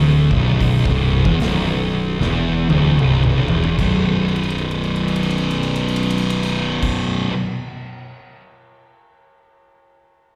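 A slow, swung 4/4 groove at 75 BPM carries this ominous, heavy stoner and doom metal passage in B phrygian, which moves from B minor to a B power chord at 3.8 seconds. A thick, double-tracked fuzz guitar sits up front with distortion and slapback echo over a growling, overdriven picked electric bass. A big acoustic rock kit with a boomy kick, medium-tuned snare, hi-hat, ride, crash and toms enters at 0.3 seconds, throws in fills, and plays on alone after the guitar stops at 7.3 seconds, all heard as a live gig through the venue's PA in a recital-hall reverb.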